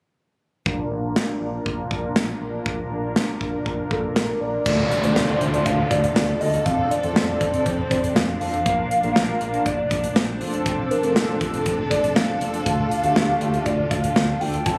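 Captured on a phone in a club-like room with a plate reverb, this bright, upbeat synth-pop excerpt at 120 BPM opens with a punchy, up-front studio drum kit, a round, deep analog bass and mellow, filter-swept synth brass with chorus, before a hollow, woody clarinet-like synth lead with slapback echo takes the melody at 3.9 seconds and a distant, bowed string section with expressive portamento joins at 4.7 seconds alongside a background electronic downlifter that runs until 8.7 seconds.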